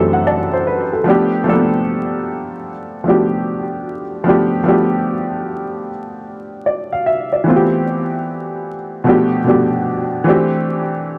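Hip hop with a reflective, nostalgic mood, this short cut from a longer piece sits at 75 BPM in 4/4 with a 65% swing on the sixteenths, tuned to A4 = 439 Hz. A dark upright piano carries everything on its own, its woody, mellow tone slightly detuned and short in sustain, placed up front and ranging from F#2 to A5. It opens with a fill over D7/F#, then settles onto G7 at 1.1 seconds, and at 7.5 seconds the second section moves through Am7, G9/B and C69. Cassette tape coloring and analog delay on the piano deepen its aged character. A moderate spring reverb and small room ambience surround it, while vinyl crackle adds texture to the dark, warm production.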